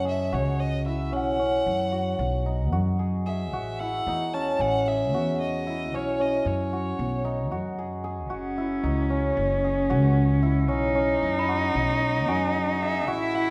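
In a straight 9/8 at 226 eighth-note beats per minute, this hypnotic, pensive stretch of contemporary chamber music rests on up-front, shimmering, ringing cimbalom arpeggios and a growly, woody pizzicato upright bass, while a dark, lightly vibratoed bowed violin carries the melody, a very quiet, bell-like celesta, sweet but slightly out of tune, adds delicate texture, and a clear, nasal, focused cello enters at 8.3 s with a second line, the ensemble sitting in a wet recital hall reverb over chords moving from F#m7 through B69 and Amaj7.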